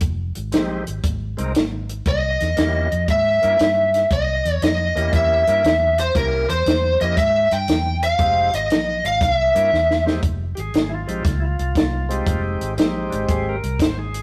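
Soulful and mournful, this electric blues shuffle in F minor moves at 118 BPM with swung eighth notes, heard as a short cut from a longer piece in a rough rehearsal-room recording with light reverb. A compact cocktail drum kit sits up front from the start, its dry, natural sound built on a high-tuned snare, tight kick and hi-hat, while a vintage muted fingered electric bass supplies a dark, round, foam-muted bottom. A bright tonewheel organ joins at 0.5 seconds with a reedy, lightly overdriven tone, audible key click and a slow rotary speaker, accompanying over harmony that moves between Fm7 and C7b9. The lead guitar through a small cranked amp carries the melody from 2.1 to 10.0 seconds, picked and overdriven with a warm bite that stands forward in the mix. A drum fill from 9.7 seconds leads into a new section at 10.2 seconds, where the harmony returns to Fm7 for the organ, bass and drums.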